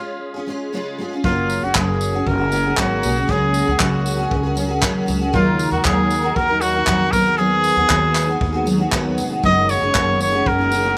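A straight 4/4 pulse at 117 BPM drives this carefree, heartfelt acoustic pop excerpt in F# major, where a warm trumpet with light vibrato and scooped notes carries the melody up front over a bright, full-bodied picked steel-string guitar that is double-tracked with slapback echo; at 1.2 seconds a woody, thumpy pizzicato upright bass and a distant, roomy brush drum kit with a punchy kick, handclaps and tambourine join in, and from 2.5 seconds a cloudy, evolving granular pad with built-in reverb drifts mellow sustained chords in the background.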